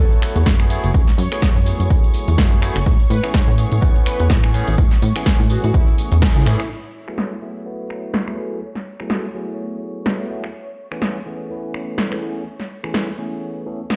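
A swung 125 BPM groove in 4/4 drives this groovy, nostalgic slice of filtered disco house in F# minor, cut from a longer piece and moving between F#m11 and Amaj9 chords. An up-front, tape-warm electronic kick and a plucky, funky sawtooth bass anchor the first half, with a punchy analog drum machine supplying snare, hi-hat, finger snaps and crash cymbal, and a very quiet, compressed tambourine adding shimmer. A barky, bright tine electric piano with phaser carries the accompaniment throughout, while a lush, bowed violin section holds smooth sustained chords in the background. A fat, detuned analog synth brass line with chorus, vibrato and tape echo warbles a vintage melody behind the mix, and nearly every part breathes with sidechain pumping. After a band accent at 6.2 seconds, the kick, bass and brass drop out, and from 6.7 seconds a filter sweep runs over the remaining instruments and the drums, all set in a booming stone-room reverb, as if played on a big sound system in a bare room.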